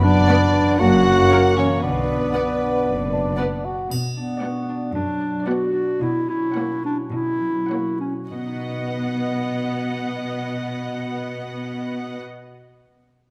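A playful, whimsical cinematic film cue in B minor, cut from a longer piece, moves at 99-118 BPM in straight 4/4 and slows between 2.9 and 8.3 seconds, opening with a woody soft-mallet folk marimba, an airy, hollow concert flute, a dark cor anglais, a mellow bassoon and a distant French horn section holding chords over a con sordino double bass section, while a veiled muted violin section carries the melody beside an up-front clarinet, a second muted violin line, a muted viola section and smooth-topped muted cellos, as a ringing, fingerpicked concert harp arpeggiates throughout and a bright triangle sounds at 3.9 seconds, set in a moderate scoring-stage reverb for a quirky, magical feel.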